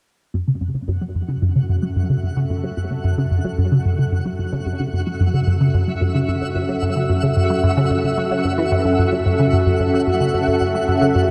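This is an ambient, sequencer-driven space music excerpt at 111 BPM in 4/4 with a straight feel, set in F# minor and holding a single F#m7 chord. The mood is hypnotic and mysterious. A juicy, squelchy blip pluck opens at 0.3 s with a resonant, up-front riff in the low register, its fast attack and short decay colored by phaser, ensemble chorus and analog delay while a filter sweep reshapes it. At 1.3 s a full-bodied, detuned sawtooth pad fades in with slow-attack sustained chords, its sub octave and filter swell thickened by chorus. From 1.6 s a twinkling granular texture adds an octave-up FM shimmer high above, softly placed and bathed in its own built-in reverb. A huge ambient reverb with a 7.3-second decay surrounds the sound, giving it a vast, floating depth.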